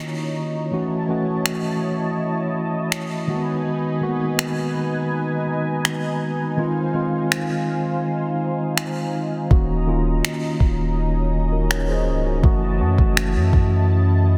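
This moody, longing contemporary R&B passage, cut from a longer piece, opens on a mellow tine electric piano playing clean accompaniment that sounds as if heard through its own built-in speakers. Alongside it sits a soft-attack analog pad with detuned sawtooth tones, chorus, a moving notch and sidechain pumping. At 1.5 seconds a produced electronic drum kit joins up front at a steady 82 BPM in straight 4/4, with finger snaps, a soft kick and a touch of clipping on the snare, all re-recorded in a small room. The harmony moves through Ebm7, Gbm7, Abm7 and Fm7 before circling back to Ebm7. At 9.5 seconds a deep, sine-like 808-style bass arrives with a fast attack and long decaying notes. Light reverb surrounds a dense, heavily limited modern master.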